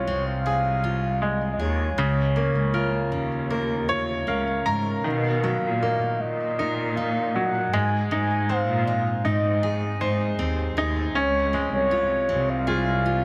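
A mellow, horn-like synth lead opens this excerpt from a longer pop ballad, together with a bright grand piano and a picked steel-string acoustic guitar, and a lush bowed cello section joins almost at once as the bass. The mood is longing and emotional, moving at a slow 79 BPM in a straight 4/4, with the harmony drifting from Dbmaj7 through Bmaj7 and Ab before settling back on Dbmaj7. The synth carries the melody with a round, sustained tone and soft attack, touched by chorus and vibrato. The piano sits up front with a brilliant, polished sound and short sustain, adding a fill between 3.5 and 5.1 seconds. The jumbo guitar plays full-bodied arpeggios through a delay with audible finger squeak, while the symphonic cellos give a smooth, even, vibrato-rich foundation. A moderate hall reverb wraps the ensemble in a spacious glow.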